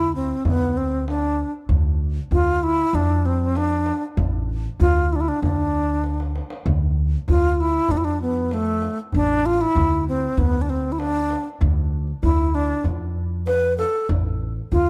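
An Arabic maqam ensemble piece in D minor at 97 BPM, hypnotic and soulful, this short cut from a longer work sets a bright wooden-headed alto flute up front, its airy, vibrato-laden melody carrying crisp attacks, an unsteady character and a tape echo. Beneath it a pizzicato upright bass with gut strings gives a woody, thumpy low line, while a deep clay-shell darbuka sits distant in a large space and adds a drum fill at 6.0 seconds. The whole has the dry, close character of a 1970s-style studio recording in a small room.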